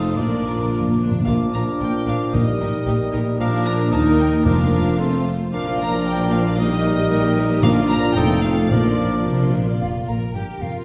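A spirited, lively passage cut from a quick classical-period movement for symphony orchestra opens with nearly the full ensemble at once, as a warm, smooth violin section carries the melody in Bb major at 113 BPM in 2/4. A pure, straight-toned flute, a bright, punchy clarinet and a second, expressive violin section add second lines above a focused viola section and a mellow bassoon in accompaniment, while tight French horns hold sustained chords. Rich double basses and even cellos anchor the bass, and hard-mallet timpani, articulate and dry, enter with a fill at 0.2 s, drop out at 5.0 s and return at 7.6 s. The orchestra is heard from further back in a recital hall with a reverb of 1.5 s, and the clarinet, bassoon, horns and timpani stop at 9.5 s as the strings and flute carry on to the end.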